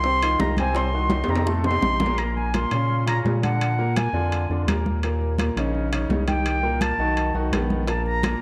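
A pure, straight-toned concert flute solos up front through this driving, fiery Afro-Cuban jazz excerpt, over a deep, wave-folded analog bass, a clear grand piano with audible action noise, bright congas, ringing saturated timbales, and round, dry bongos that drop out at 2.1 seconds and return at 7.9 seconds, all set in a moderate spring reverb with a drum fill from 0.8 to 2.2 seconds.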